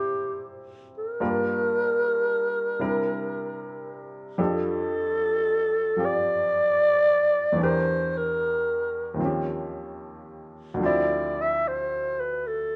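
A growling, raspy clarinet with vibrato and scooped notes carries the melody up front, over a bright, woody upright piano with audible action noise and short sustain, in this romantic, intimate swinging jazz excerpt at 75 BPM in C major, tuned to A4 = 445 Hz, with both parts playing throughout its 12.8 seconds through chords such as Cadd9, F69 and Eb13 in a moderate large-studio reverb.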